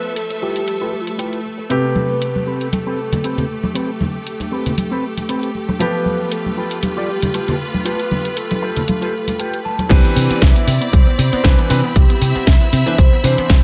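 A mellow, sub-octave synth lead with chorus, phaser and tape echo carries the melody through this sensual, groovy nu-disco cut, over a pumping vintage grand piano, lush bowed strings, a cracking overdriven house kit with muffled hats and cymbals, and a twangy envelope-filtered guitar riff, with soft-handed congas entering at 2.0 s and a clean electric guitar fill at 8.4 s before the drop at 9.9 s brings in a punchy electronic kick, a bright, amped envelope-filtered fingered bass and warbling detuned unison pluck arpeggios in the background.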